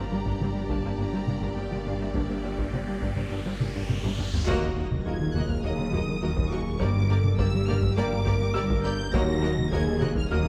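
Set in a moderate scoring-stage reverb, this hybrid orchestral and electronic film-score excerpt moves at 103 BPM in 4/4, vast and relentless as G minor and E-flat minor chords alternate. Lush bowed violins carry a vibrato-rich melody over a second violin line and background violas, while a dark, distant trombone section, mellow French horns, a glassy FM pad and a very quiet, intimate baby grand piano with audible action noise fill out the harmony and texture. Underneath, a smooth gliding synth bass riff, a swirling phased detuned saw bass, woody cellos and double basses and a hard-stick taiko ensemble drive the low end, with an electronic riser building from 1.5 s into a drum fill and an impact that hits at 4.5 s.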